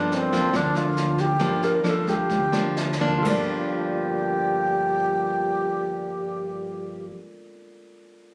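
An airy, straight-toned alto flute carries the melody over fingerpicked nylon-string guitar on fresh strings, a woody pizzicato upright bass and a barky, lightly overdriven electric piano in the background on a Gm7 chord, opening this intimate, melancholic bossa nova fragment in G minor at 122-144 BPM. The brushed drum kit, with dark cymbals and a boomy kick, sounds distant and roomy as the tempo slows, plays a fill at 2.8 seconds and drops out at 3.4 seconds, all captured on a phone amid compressed club ambience with light reverb.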